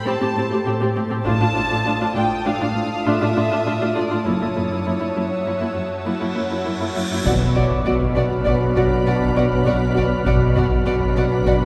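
A shimmering, ethereal pad with chorus and its own reverb opens this ominous, mysterious suspense cue in 5/4, beneath a bowed violin section melody played sul tasto with light vibrato. Soft-attack violas, a cello riff, a dark, woody cello bass and a clear double bass section soon join. A background taiko ensemble on hard sticks, quiet high violins and a very quiet, ringing, fingerpicked harp add texture. At 6.1 s a huge cymbal swell leads into a dark impact at 7.3 s, where the taiko returns and a second violin line and mellow French horns enter, all set in a reverberant concert hall.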